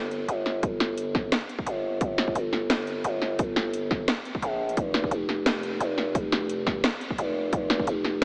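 A growling 808-style bass sits up front from the opening moment, its buzzy sine tone pushed through tube saturation, with a fast attack that decays and a low register from F1 to Bb1. This is a dark, spacious half-time drum and bass piece in G minor at 174 BPM, with a slight swing on the sixteenths, cut from a longer track and shaped as a build-up. The drum kit enters at 0.1 seconds, layered and produced, with a cracking snare and metallic hats that sound tape-warm and re-recorded in a small room, placed close to the listener. A heavy electronic kick joins at 0.6 seconds, sitting a little lower in the mix. A huge ambient reverb with a long tail opens up the space, while the overall sound has the character of a small speaker.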